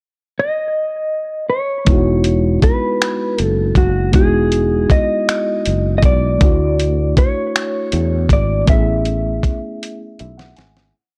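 A dusty, sampler-style soul drum kit sits up front in this tender, slow six-eight R&B piece, with a thumpy kick, fat snare, hi-hat and finger snaps entering at 1.9 seconds after a fingered, dark-toned electric guitar opens the pickup alone with its hook phrases. A fretless electric bass with ensemble chorus slides beneath, adding muted ghost notes, while a mellow tine electric piano holds rootless chords through its built-in speakers over Emaj9, Dmaj9 and Amaj9. The dry, gritty cassette sound fades out from 8.7 seconds as the drums and electric piano play closing fills.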